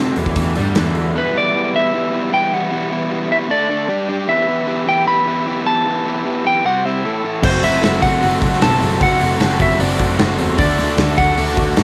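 Light reverb and small-room ambience frame this cool, moody indie rock excerpt. A clean electric guitar carries the melody through tape echo over an up-front crunchy overdriven guitar riff, while a very quiet tonewheel organ holds smooth sustained chords with key click. A lo-fi raw garage guitar with overdrive, lush chorus and tape echo, a distant bowed double bass, and a big rock drum kit with bright cymbals and a punchy kick appear only in the opening moment and return at 7.4 seconds, just after a raspy, growling trumpet slips in a very quiet second line at 6.7 seconds.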